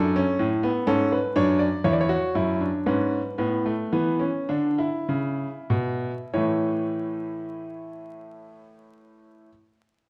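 The rhythm moves in a straight, even four-beat metre and gradually slows through the first 6.3 seconds before settling into a new section. This cut from a longer piece is a classical, baroque-style fugue in three voices, lively yet stately in mood. A solo grand piano carries every line from the low bass register up into the treble, its tone clear, smooth and vintage, placed up front in the mix. The harmony passes from a D chord over F-sharp through an A chord over E and an E5 before arriving on A as the second section begins. The piano sounds until 9.5 seconds, steeped in a recital hall's wet reverb within a dark, warm production flecked with vinyl crackle.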